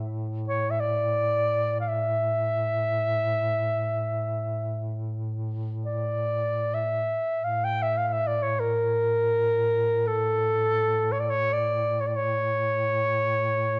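From the first moment, an alto saxophone sings a mournful melody over a duduk drone on A2, and the two sound together for the full 13.8 seconds of this excerpt from a longer piece. This is a Caucasian folk lament in free time, heavy with grief and longing. Played in a classical style, the saxophone sits up front with a soft attack, light vibrato and a smooth top, moving between A4 and G5. The duduk, mellow and folk-styled with its own vibrato, holds its single low pitch beneath, a little quieter than the saxophone. A moderate scoring-stage reverb and a dark production place the pair in a spacious, shadowed setting.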